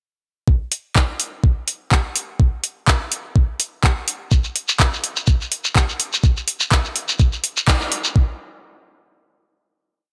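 A four-on-the-floor kick with a lightly swung sixteenth feel drives this short, trippy and raw house piece. The thumpy, sampler-style kick starts at 0.5 seconds and sits up front with a warm tape character and the sound of a small room. A booming analog drum machine joins almost at once with metallic programmed hats and a handclap backbeat. At 4.3 seconds a grainy, mellow shekere enters close and up front, playing hand-played sixteenths. After a band accent near the end of the groove, a final hit arrives at 8.2 seconds, all set in light reverb and digital ambience.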